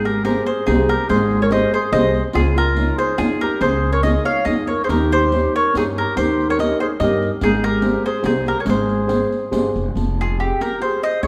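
A round, picked mandolin sits up front and carries the melody on its double strings in this wistful, romantic Italian serenade, cut from a longer piece. Beneath it, a warm clarinet in classical style sings a second line, while a thumb-plucked flamenco guitar fills in the accompaniment, its finger squeaks audible. A pizzicato upright bass with gut strings gives a woody, thumpy low end, and a riq joins at 0.1 s with dark jingles played by soft hands, sounding distant as if across a large room. The music moves in a flexible, rubato triple metre through lush chords such as Abmaj7, Dbadd9 and Eb7, then turns toward Fmadd9 at 9.9 s for a brief new section. A wet recital hall reverb wraps the ensemble in a lingering glow.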